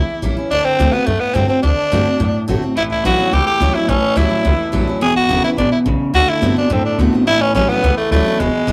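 A rowdy, rollicking rockabilly excerpt in a straight 4/4, cut from a longer piece and driven by a dominant-seventh progression. A breathy, raspy tenor saxophone carries the melody up front from the start, its edgy tone colored with vibrato in a pop-style solo. Beneath it, a bright, full-bodied steel-string acoustic guitar is picked in accompaniment with audible finger squeak, while a woody, thumpy upright bass on gut strings plays pizzicato in the low register. At 2.8 seconds an electric guitar enters with a twangy, slightly broken-up riff through a small old amp, bathed in spring reverb. The sound is a rough rehearsal-room recording in a moderate small room, with tube saturation and lossy compression artefacts adding grit.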